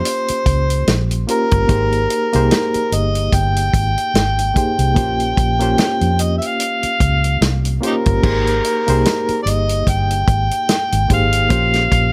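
Lush 1970s-style soul at a slow 73 BPM with a swung sixteenth feel, this short, bittersweet and cinematic excerpt moves between Bbm69 and Abmaj9 chords. Up front, a gritty, overdriven harmonica carries the melody in a jazz solo style, with light vibrato, tongue slaps and scooped notes, over a barky, reedy electric piano with overdrive and harmonic tremolo. A dry, mid-forward acoustic drum kit with a tight kick and rolled-off top joins at 0.1 seconds, and a dark, round, foam-muted fingered bass enters at 0.3 seconds, all with little reverb.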